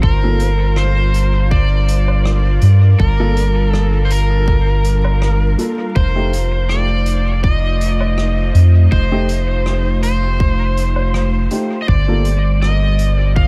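Ambient dub at 81 BPM in G minor, this short, meditative cut from a longer piece sits on a lightly swung 4/4 groove and moves from Gm7 to F7 before returning to Gm7 at 11.9 seconds. A deep, round sub bass sits up front with a soft, fast-attacking tone, joined by a tight, overdriven electronic kick that carries a small-room character. Over them, a bright, overdriven slide guitar played with fingerpicks carries the melody in a high register, trailed by dub echo. An airy, breathy pad holds sustained chords with a slow attack, its detuned, warbling vintage tone thickened by chorus. In the background, a dark, woody upright piano places short echoed stabs from 0.2 seconds, while a distant soft-mallet kit adds hi-hat, rim click and woodblock through its own dub echo. Vinyl crackle and small room ambience lend the whole a dusty, close atmosphere.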